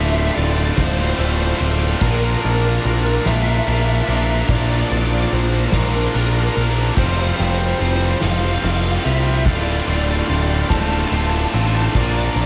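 Cinematic and cathartic, this post-rock passage at 48 BPM in a slow 6/8 is anchored by an up-front growling overdriven bass and two tight, bright distorted guitars picking riffs (one set further back), while a dark, compressed overdriven lead guitar carries the melody through ensemble chorus and analog delay, a very quiet reedy, breathing harmonium holds sustained chords over Dm7, Bbmaj7 and Fsus2, and a distant, roomy soft-mallet drum kit with dark cymbals and a punchy kick enters at 0.4 s in the background of a light, small-room ambience.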